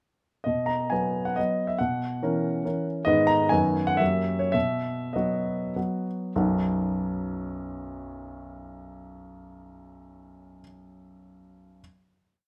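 Lightly reverberant and intimate, with the grand piano's action noise audible up front, this brief, graceful romantic dance in triple time sets a rustic single-line melody in dotted rhythms over bass and chords that stress the second or third beat, moving with rubato, slowing from 2.4 seconds and settling on a final chord held from 6.4 seconds.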